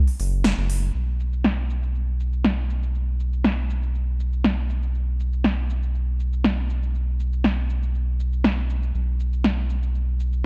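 Progressive house cut from a longer piece, emotional and driving in a straight four, with an up-front, overdriven big-room dance kit of punchy snare, crisp filtered hats and shaker over a round, deep analog bass that sustains dark wave-folded tones from 0.2 seconds, all in a dry, dusky mix.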